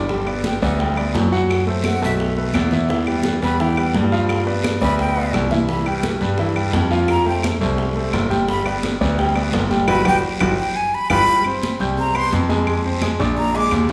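A breathy jazz flute with a soft attack and straight tone carries an expressive solo through this sunny, danceable Afro-Cuban jazz excerpt in G major at 172 BPM, over a grand piano's intimate accompaniment with audible action noise and long sustain, while a second concert grand holds down a deep, polished bass line up front. Bright, high-tuned congas struck with hard hands, tight bongos and cowbell, and woody claves sit in the background, joined by a raspy guiro, and a drum fill with a band accent arrives at 9.9 seconds. The whole ensemble is bathed in the reverberant glow of a recital hall.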